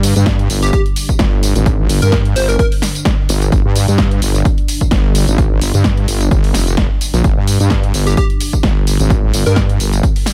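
A digital sheen frames this swaggering, bouncy bass house excerpt at 129 BPM, its 4/4 groove carrying a light swing on the sixteenths. Up front sits a heavy, saturated wobble bass blending sawtooth and sine tones, compressed and treated with chorus and sidechain pumping, mellow yet weighty as it holds the low end from the start. A punchy electronic kick enters at 0.3 seconds to join a house kit of hi-hat, snare and tambourine already playing from the start, the snare punchy and the hats warm, both tape-warm drum parts placed in a small room. A bright, catchy plucky lead built from detuned square-wave unison with a noise layer appears in two short phrases, the first from 0.6 seconds, each trailed by dub echo. Far beneath it all lies a very quiet, moody pad of detuned saws and sub octave warbles with vintage chorus and built-in reverb, sustaining dark chords over a G5 harmony.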